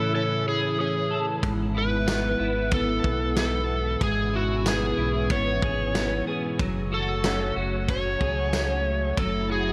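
Hazy and melancholic, this dream pop excerpt puts a dark, overdriven slide guitar melody with digital delay up front over a swirling, phased analog pad and chorused clean electric guitar arpeggios, joined at 1.4 seconds by a deep sub bass with octave and a loose indie drum kit of punchy kick, snare, ride cymbal and tambourine, in a lightly reverberant space.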